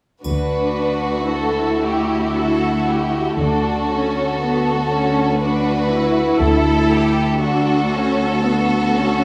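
A violin section sings the melody of this serene, slow romantic orchestral excerpt in D major, bowed with light vibrato and an even, smooth tone, while a second violin section adds a focused, rich line just beneath it. Violas supply lush, soft-attack accompaniment, and an up-front cello section holds a low D alongside a double bass section that stops at 7.4 s, the movement unfolding in a rubato 3/4 at 59 BPM. A bright triangle glints in the background until 2.3 s, and a moderate scoring-stage reverb lends the performance a spacious glow.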